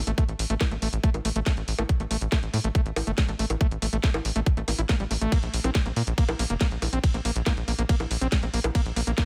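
Driving and psychedelic, this short excerpt of psychedelic trance runs at 140 BPM in a straight 4/4, centred on A phrygian with a move from A5 to Bb5 at 5.3 seconds. A tight, punchy sequencer bass with a plucked sawtooth-and-square tone sits up front alongside a forward electronic kick, while an overdriven acid bass riff adds squelchy, gritty, resonant lines treated with distortion, sidechain pumping and delay. A layered garage kit of bongos, hi-hat, ride and a cracking snare fills out the groove, the drums carrying the character of a small room within a digital ambience.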